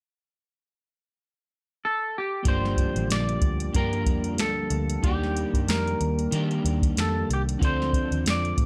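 Mellow and hazy, this cut of lightly swung indie bedroom pop opens with a bright, twangy lap steel melody steeped in lush chorus and tape echo at 1.8 seconds, joined at 2.4 seconds by a dark, slightly broken-up picked guitar with warbly pitch drift and a tine electric piano tucked in the background, and then by a round, foam-muted picked bass and an up-front vintage rhythm box with deep kick, crisp snare and metallic hats at 2.5 seconds, moving through Gm7, Ebmaj7 and Dm7 under light reverb.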